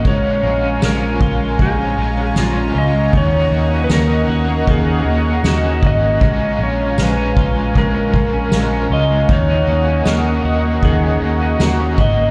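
This ethereal, haunting dream pop opens with everything at once: soft mallets on a distant, roomy drum kit with dark cymbals and a punchy kick, a round, foam-muted electric bass up front, and a clean, twangy electric guitar playing chorused, delayed arpeggios over chords alternating between Bbm7 and Ebm7. A slow-attack sawtooth pad hangs detuned and chorused above, while a double-tracked, bright overdriven guitar adds tremolo-laced accompaniment and a barely audible hammered cimbalom shimmers underneath. Carrying the melody, a clean lap steel glides with slide and volume swells through a haze of delay, all set in a large studio reverb in this cut from a longer piece.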